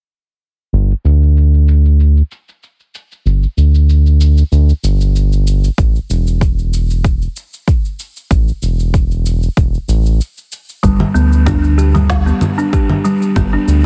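Organic downtempo with an earthy, hypnotic mood and a light swing, where a round, evolving analog bass with tube saturation carries a filter sweep beneath overdriven electronic cabasa, congas and a woody snare heard through a small room, an up-front deep kick joining at 5.8 seconds, and after a brief break a buzzing, thumbnail-plucked kalimba arrives at 10.8 seconds with delayed, filter-swept arpeggios, all set in a heavily compressed, radio-like ambience in this cut from a longer piece.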